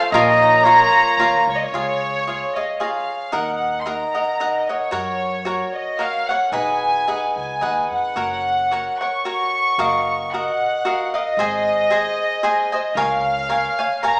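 A bowed violin section carries the melody up front, its gut-string, reedy tone with light vibrato and a smooth top giving this cut from a longer mariachi piece a proud, romantic air. It plays at 113 BPM in 3/4 in Db major, with a lilting swing and a rubato feel. A crisp, picked cavaquinho sits up front alongside it throughout as accompaniment, while a woody upright bass plays pizzicato underneath at a low level until 13.7 seconds. In the opening 1.7 seconds, a mellow solo trumpet adds a brief second line in classical style, and a soft-attack symphonic violin section holds pure, floating chords sul tasto in the background before both fall away. The harmony moves from Bb minor into Db and on through Eb minor, Gb, Cb6 and Ab before settling on Db6. The band sounds as though it is playing live in one room, with a generous studio reverb and a small-speaker quality to the recording.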